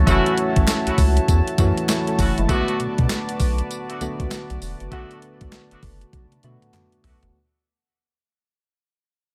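A crisp, overdriven 8-bit drum machine with a thumpy kick, snare, hi-hat, tambourine and toms drives this confident, punchy new jack swing excerpt at 99 BPM with a swung 16th feel, alongside up-front soft electric-piano-like synth keys with chorus, a round, deep analog bass, a shimmering chorused pulse-width pad, tight vintage horn stabs through digital delay and a very quiet group handclap, all moving from F#m7 to Bm7 in a digital ambience as the passage fades out and a drum fill arrives at 6.1 seconds.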